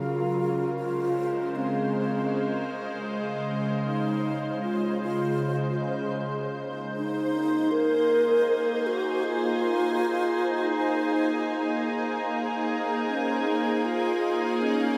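Weightless and serene, this ambient passage at 78 BPM sets a breathy, hollow alto flute singing with vibrato and tape echo over a bright, morphing wave-folded pad that sits up front with slow-attack chorused chords, moving from Dbmaj7 to Abadd9 at 6.2 seconds, all bathed in a huge reverb.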